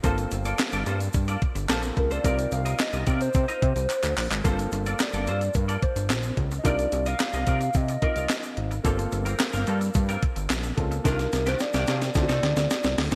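This early-eighties boogie funk piece in G minor at 109 BPM opens with a thumpy, sampler-style drum machine with gated reverb, a fat, detuned analog bass up front, a clean semi-hollow guitar riff with ensemble chorus, a grand piano in the background and a grainy egg shaker, cycling between Gm11 and Cm11 before closing on a D7b9. At 2.0 seconds a hollow, woody synth lead with chorus, phaser and vibrato takes the melody, and drum fills arrive at 3.9 and 11.1 seconds. The bright digital production gives it a funky, late-night mood.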